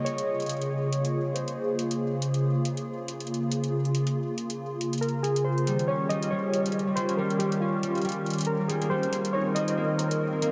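A hollow, flute-like pad sits up front in this glitchy, melancholic IDM excerpt, holding soft sustained chords in Bb dorian, moving from Bbm7 through Eb9 to F7sus4, all inside a huge ambient reverb that soaks the dreamy mix. Warbly lo-fi synth keys with chorus and analog delay carry a nostalgic, detuned melody that drops out briefly and returns at 5.0 seconds, while a ringing concert harp plays arpeggios through tape echo and rejoins at 5.7 seconds. Metallic, overdriven electronic hi-hats tick along at 139 BPM with a light 16th-note swing, and the piece is tuned to A4 = 437 Hz.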